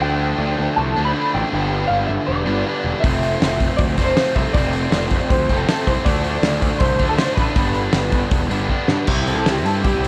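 Indie rock with a wistful, jangly mood, cut from a longer piece and heard through worn, warbling cassette tape with a drifting pitch and little reverb. A dark, slightly broken-up guitar through a small old amp carries the fingered melody with analog chorus, over a biting overdriven guitar riff, a raw garage guitar tucked in the background with tape echo and chorus, and a growly, fuzzed picked bass up front. A loose indie drum kit with a fat snare and tight kick enters at 3.0 seconds, and a drum fill at 8.7 seconds leads to the arrival on C at 9.1 seconds.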